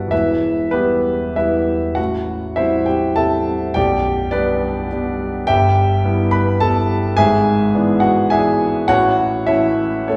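A lush recital hall surrounds this recording with a reverb that lingers for about 1.6 seconds, and the listener seems seated some way back in the room. It is a short romantic character piece for solo grand piano in G major, set in 3/4 at roughly 88-110 BPM with a flexible, rubato feel. The piano sounds warm, intimate and natural, sitting up front with a long sustain and audible action noise. It spans from a deep B0 to B5 across its 10.2 seconds. The harmony moves from Em through Am7, G/B and Em/G to E7/G# before reaching A at 8.9 seconds, giving the fragment a warm, hopeful character as it is cut from a longer work.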